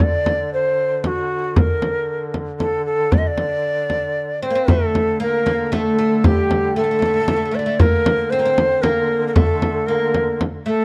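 This short excerpt from a longer piece has a dry, close 1970s-style studio sound with little reverb, giving a passionate, stately Persian modal ensemble in D dastgah homayun at 115 BPM in a straight 3/4. A breathy, bright ney carries the melody from F#4 to Eb5+41c, its reedy tone up front, with vibrato, a crisp attack and rolled-off highs. Beneath it, a warm duduk holds a drone on D3 with scooped notes in a vintage folk style, while an acoustic frame drum keeps the pulse prominent in the mix. At 4.4 s a plectrum-plucked, fretless oud enters with a second line between G3 and C4, its woody, deep double strings thickening the texture. The music moves into a new section at 4.7 s and carries on to the cut at 10.8 s.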